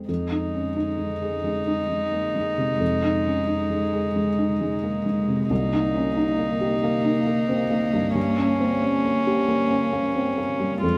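A felt-muted upright piano, dark and intimate with audible action noise, opens this melancholic, longing neoclassical excerpt in F minor at a rubato 67 BPM in 3/4, tuned to A4 = 437 Hz, as a floating sul tasto viola and a close, airy-bowed cello with light vibrato join at 0.1 s over Fm7, Cm7 and Gdim chords in light reverb.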